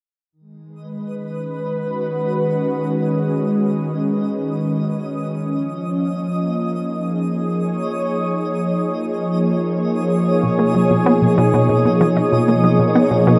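A lush, thick unison pad sits up front, its detuned sawtooth voices warbling with vintage chorus as it sustains G#m, A#m7 and Bmaj7 chords in this expansive, cosmic passage of sequencer-driven ambient space music at 95 BPM in G# dorian. A twinkling granular texture fades in high above from 0.8 seconds, its FM tone adding sparkling octave-up shimmer. At 10.4 seconds a round, detuned analog pluck joins with a decaying filtered riff through chorus and tape echo, all set in a wet plate reverb and cut from a longer piece.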